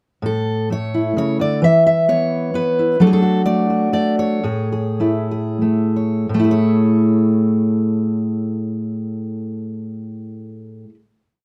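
This short folk piece for solo fingerstyle acoustic guitar carries a gentle, nostalgic mood, moving in a rubato 3/4 in A major with the tempo drifting between 83 and 132 BPM. A fingerpicked steel-string dreadnought guitar plays alone from 0.2 seconds, its warm tone sitting up front and spanning A2 to E5. Its alternating-thumb pattern supports a motif-based melody built from song-like phrases over the chords A, E5, D/F# and Amaj7. The playing slows from 3.0 seconds, settling at 6.3 seconds onto a final chord that rings out. Moderate studio reverb gives the guitar a sense of space around it.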